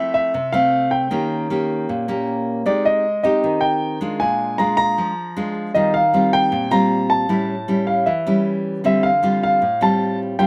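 A concert grand piano and a fingerpicked nylon-string guitar open together in this sunny, sophisticated bossa nova fragment, cut from a longer piece. The piano carries the melody in a high register, its tone intimate and natural, with audible action noise and deep bass heard up front. Beneath it, the guitar supplies the accompaniment with a full-bodied, deep classical sound from fresh strings, also placed close, and a slapback echo trails its notes. The harmony moves through Fmaj7, Eb7, Abmaj7 and Bb7, then Eb69 and A7, before settling on Dm7 near 8.8 seconds. Recorded outdoors with a light reverb, the short passage runs to 10.5 seconds and keeps a warm glow throughout.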